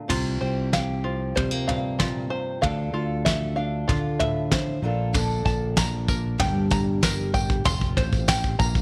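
Light reverb and small-room ambience frame this nostalgic, hopeful indie folk excerpt at 95 BPM in C mixolydian. A woody, old-stringed fingerpicked steel-string acoustic guitar plays until 7.7 seconds beside plunky, twangy open-back banjo arpeggios, a warm fingered electric bass, and an up-front soft brush kit with dark cymbals, a fat snare and a tight kick that carries a fill across the whole building passage, as the chords move from C7sus4 through Dmadd9, Bbmaj7 and Gm to Fsus2. At 5.1 seconds a shimmering, octave-doubled picked twelve-string acoustic guitar and a jingly, vintage tambourine join the arrangement.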